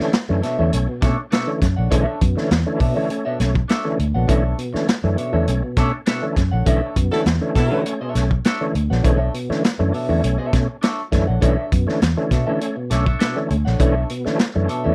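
Up front, an overdriven tonewheel organ spits thick, percussive stabs through fast rotary speaker, chorus vibrato and slapback echo, riding a gritty, saturated breakbeat kit with a punchy kick, a dark, round foam-muted fingered bass and a clean, picked electric guitar through wah, all sitting on a single Bm11 in this hypnotic, sly 101 BPM B-minor funk excerpt, where a band accent from 6.7 to 9.0 seconds brings in a brief horn section line with light vibrato and slapback echo at 7.1 seconds, all in a dry, close 1970s-style studio sound.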